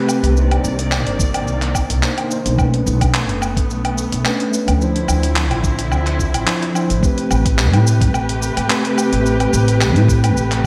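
A mellow tine electric piano with digital delay and a dark, bowed chamber string section open this relaxed, wistful sunset chillout excerpt in A minor at 108 BPM with a gentle 16th-note swing, joined by a gritty, dusty soul sampler-style kit of handclaps, hi-hat, shaker and woodblock under gated reverb, a woody, up-front pizzicato upright bass, and from 1.2 s a compressed, thumpy electronic kick, set in a lush hall reverb with bright 1980s-style digital production as the chords move from Cm9 through Bm9 and Dm9 to Am9.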